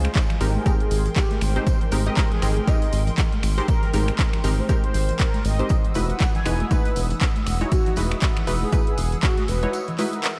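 Deep house at 119 BPM with a sunny, easy swing, where a mellow horn-like synth lead with chorus, tape echo, vibrato and portamento glides over a hollow, flute-like pad, muted dub chord stabs soaked in diffuse ambient delay and cassette tape grit, and a round, deep analog bass pumping with the sidechain, while a punchy, tape-warm electronic kick, bright overdriven hats, finger snaps and handclaps, high-tuned background congas and a very quiet hall-sized kit with snare and tambourine play through the chord change from Abmaj9 to Emaj9 at 5.7 seconds, all under vinyl crackle before a short break at 9.7 seconds in this excerpt from a longer track.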